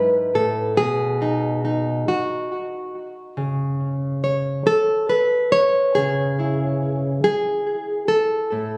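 Set in a lilting 6/8 that stretches and yields freely in rubato, this short folk fragment moves at an unhurried, slow pulse felt in dotted quarters. A lone nylon-string guitar carries the whole 8.8 seconds. It is fingerpicked with a classical touch and sits up front, ranging from G#2 to C#5 and tuned slightly below standard pitch at A4 = 438 Hz. Its warm acoustic tone is touched by a tape echo, while light reverb and a phone-in-the-room capture with added studio reverb give the sound an intimate, homespun closeness. The harmony shifts from A5 to B at 0.8 seconds and settles on C#m at 3.4 seconds, lending the passage a wistful, nostalgic glow. It is a brief cut from a longer piece and feels warm and reflective throughout.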